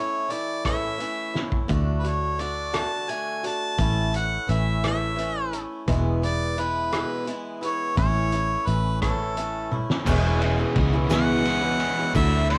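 Open-road and warm, this slow folk and heartland rock excerpt in 6/8 at 57 BPM in A major sets a punchy, up-front harmonica melody over boxy, freshly strung picked swing-style acoustic guitar and a loose indie drum kit with a fat snare, punchy kick and gritty, rolled-off saturation that slips in short fills, joined at 1.7 s by a round, dark fingered electric bass, while at 10.1 s a crunchy, double-tracked overdriven guitar riff and a grainy tube shaker tucked in the background arrive on an E6 chord, all in a home cassette recording with light reverb.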